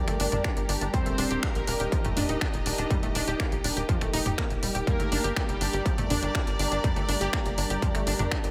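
A straight 4/4 pulse drives this dark, melancholic melodic techno excerpt, with an overdriven electronic kick entering at 0.4 s over a punchy analog drum machine of finger snaps, hi-hat and toms, a tight, nasal sequencer bass, and a detuned unison pluck playing arpeggios through cassette tape and tape echo. In the background, a deep, moody ambient pad with chorus and built-in reverb sustains chords moving from G minor to E-flat and back at 4.9 s, beside a bowed studio string section with a smooth, even texture, while the pad, strings, bass and pluck all pump with sidechain. From 0.9 to 6.0 s, a bold sawtooth unison lead with vibrato and delay carries a melody alongside an airy supersaw second line with tape echo, both sharing lush chorus and vintage 12-bit sampler grit in a dreamy mix soaked in hall reverb.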